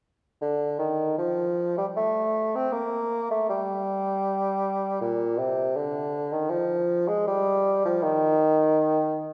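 The rhythm moves in a rubato 3/4 at around 79 BPM, giving this baroque-style classical fantasia a freely breathing, unhurried pulse. A lone bassoon carries the whole passage in G minor, tuned slightly under standard pitch, and its mood is introspective and solemn. The instrument has a mellow tone with a light vibrato, staying in its low-to-middle register between Bb2 and C4. It plays from 0.4 s to 9.2 s, a brief fragment cut from a longer piece. A wet concert hall reverb surrounds the line, and the player sounds distant and roomy, as if heard from further back in the hall.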